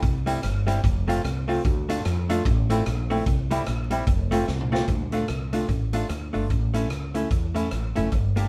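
Ska in D minor at 148 BPM with a swung feel, this mischievous, energetic excerpt from a longer piece sets a round, woody fretless bass and a big-band drum kit with a punchy kick and a medium-tuned snare up front, joined at 0.3 seconds by a dark, clean, picked archtop guitar with tape echo, all played live in one moderately ambient room under vinyl crackle, with a drum fill at 4.5 seconds leading into a second section built on D minor and A.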